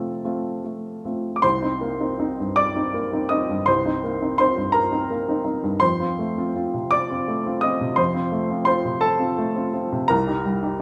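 Set in a moderate recital-hall reverb, this melancholic, wistful fragment of neoclassical minimalist piano features a solo upright piano with a woody, up-front tone and short sustain, drifting in 6/8 at a rubato 50 to 58 BPM in C dorian across a range from C2 to Eb6, moving between F and Cm7 chords over about 10.8 seconds of a longer piece.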